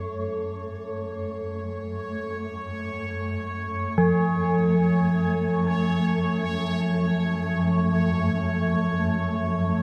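A bronze singing bowl rings up front in this dark, ominous dark ambient drone excerpt, its metallic, slowly beating tones struck with a wooden striker and spun into meditative arpeggios through delay and shimmer reverb. Beneath it, a swarming, nasal drone of detuned sine voices fades in across the full 9.8 seconds, tense and granular with a moving notch, while a bright, bubbling sawtooth texture with random resonant filter steps and chorus fades in alongside it. The free-time passage rests on an F# minor chord and sits in a huge, wet reverberant space.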